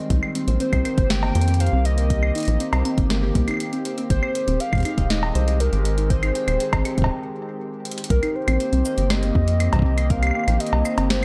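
A warbling, lo-fi pad opens on sustained chords in C minor, joined at once by a harp-like, ringing synth pluck spinning arpeggios through chorus and digital delay, a rubbery, hollow square bass sitting up front, a booming analog drum machine with crisp snare, metallic hats, claves, cowbell and shaker, and a deep electronic kick. At 0.6 seconds a detuned, nostalgic lead enters with tremolo, vibrato and tape echo, carrying a melancholic, intricate IDM groove at 120 BPM over Cm7 and Abmaj7. A break around 7.1 seconds and a drum fill lead into a new section at 8.1 seconds, all within a dark, lightly reverberant mix cut from a longer piece.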